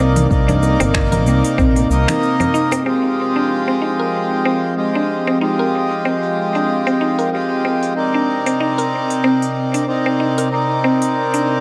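A reedy, nasal harmonium sits up front from the opening, with a soft, breathy pad and a woody, mallet-like synth pluck playing arpeggios beneath it, setting a hypnotic, mystical tone for this organic downtempo cut from a longer piece at 94 BPM in 4/4 with a light sixteenth-note swing. The harmonium and pad both carry sidechain pumping, while tape echo trails the harmonium and the pluck, and the pluck adds chorus and a gritty vintage 12-bit sampler edge. A round, dark fretless electric bass and a deep, tape-warm electronic kick appear only briefly at the start, with the bass gone by 2.0 seconds. A crisp-hatted afro-pop kit of congas, finger snaps, hi-hat and shaker is muffled by low-pass filtering, while congas and bongos sit in the background for the first few seconds. The harmony moves from Cm9 to Fm9 at 2.9 seconds, where a filter sweep on the drums begins, before returning to Cm9 at 8.0 seconds, all bathed in a lush hall reverb.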